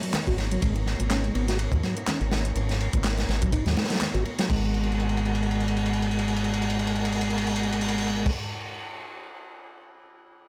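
A swaggering, energetic breakbeat excerpt opens on a drop, with a flute-like tonewheel organ riff carrying key click, a stopped rotary speaker, tube saturation and delay over a smooth background organ holding G#m9 with lush chorus and sidechain pumping. A gritty, up-front breakbeat kit with dark cymbals and a tight kick drives the groove, layered with bright electronic hi-hats and handclaps and very quiet hard-handed congas and bongos until 4.5 seconds, while a fingered electric bass with a warm envelope filter sits forward in the mix. From 4.7 seconds the breakbeat kit plays a drum fill and carries on alone past the organs and bass to 9.8 seconds, all within a light reverb.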